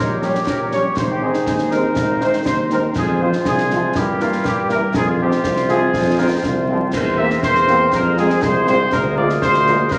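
In a straight 2/4 at 121 BPM, this festive, proud military-style march for wind band, cut from a longer piece, sets a mellow, up-front trumpet section with light vibrato on the melody over a distant, roomy woodwind section carrying the second line, a warm solo tuba on bass, very quiet French horn accompaniment and sustained trombone chords, and close, dry concert snare, bass drum and dark clash cymbals, heard within a reverberant recital hall under a layer of vinyl crackle.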